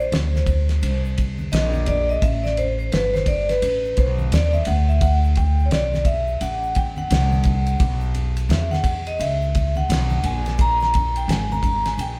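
A relaxed 86 BPM groove in 4/4, swung at 61% on the sixteenths, sets up this mellow, nocturnal jazz-hop fragment cut from a longer hip hop piece. A cloth-damped, thuddy drum kit sits up front with a tight kick, a fat snare, and dark hi-hat and ride cymbals, its top end rolled off to a soft, small-room thump. Beneath it, a pizzicato upright bass with gut strings gives a woody, thumpy low end from G1 to E2. A vibraphone played with medium mallets takes a solo across the whole 12.2 seconds, its metallic, ringing tone shimmering with a slow motor vibrato in the range from B4 to A#5. Very quietly in the background, an egg shaker and congas add a bright, compressed, slightly saturated texture under soft hands. The band plays live together in a moderate stone room whose 1.2-second reverb lends a gentle glow as the chords drift from Bbsus2 through Asus2, D5 and Bsus24 to G#sus2.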